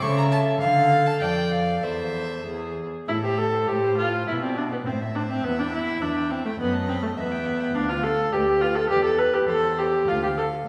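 A string quartet opens together on a quick, restless classical-period movement in A minor at 102 BPM in 2/4, its rubato phrasing lending the stormy mood an unsettled edge. The first violin carries the melody with an airy, nasal bow; the second violin adds a dark, smooth-topped line in the background; the viola sits up front with a rich, reedy accompaniment; and the cello holds the bass, all four playing in period style on gut strings. A wet scoring-stage reverb places the group further back in the room, and a new section begins at 3.1 seconds on an A minor chord before this short cut from a longer piece ends.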